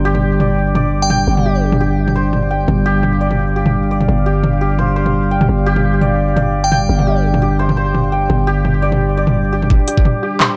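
Cinematic and dark, this half-time drum and bass excerpt sets a deep, moody ambient pad with chorus, 12-bit sampler grit and sidechain pumping beneath shimmering, hammered santur arpeggios through a low-pass filter and delay, while a growling, tube-saturated 808-style bass sits up front with a tape-warm kit of handclaps, metallic hi-hats and toms, two brief crystalline FM synth bell notes with tape echo appear, and at 9.7 s a knocking electronic kick arrives alongside a barely audible riser.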